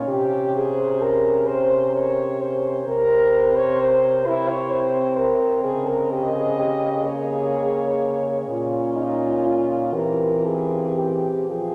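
A mellow French horn carrying the second line stands out in this melancholic, elegiac classical excerpt for horn quartet in 6/8, moving with rubato at 37-44 BPM over dark harmonies that settle on Bbm before closing on C/E, as a second mellow horn sings the lyrical melody between F4 and Eb5, a third mellow horn supplies the accompaniment, and a warm horn holds the bass, the quartet sitting in a cathedral reverb with a long 5.3-second decay.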